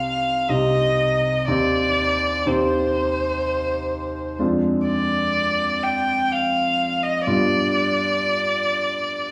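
A rich, bowed solo violin sings a melancholic, solemn melody with vibrato and expressive portamento over clear concert grand piano accompaniment with deep bass in this excerpt from a romantic classical duo, which moves at a rubato 63 BPM in 3/4 through C minor harmonies from Cm to a closing G7, heard from further back in a reverberant recital hall.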